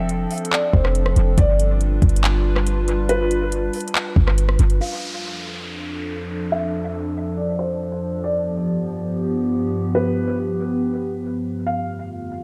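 A blissful, floating cloud-rap excerpt at 140 BPM in a half-time 4/4 feel opens on a warbling, detuned tape-like pad, treated with chorus, phaser, reverb and sidechain pumping, under a soft, felt-muted upright piano melody darkened by a low-pass filter and dub echo. A deep, boomy 808-style sine bass and a smooth R&B kit of soft kick, metallic hats, handclaps and rim click, with dub echo on the drums, carry the opening until both stop at 4.8 s, when a filter sweep begins and an electronic downlifter sounds until 8.2 s. The pad and piano then drift on alone in an echo-heavy digital ambience, the piano ending at 12.1 s and the pad at 12.4 s.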